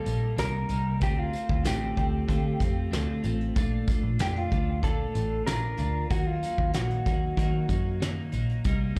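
A straight 4/4 pulse at 94 BPM carries this sunny, laid-back indie and bedroom pop fragment, cut from a longer piece. A soft brush drum kit sets the groove with a fat snare, tight kick and hi-hat, while a jingly tambourine sits close and dry in the background. Up front, a vintage foam-muted picked electric bass adds a dark, round, amped low end. A bright, twangy twelve-string electric guitar picks compressed accompaniment through lush chorus and a vibrato effect until 9.0 s, and over it a mellow, fingered electric guitar sings a short melody in the F4 to Bb4 range with subtle chorus, slapback and tape echo, stopping at 8.0 s. The harmony drifts from Cm7 to Dm7, settles on Bbmaj7 at 3.6 s, then darkens to Ebm, all heard as a live club performance through the venue's PA.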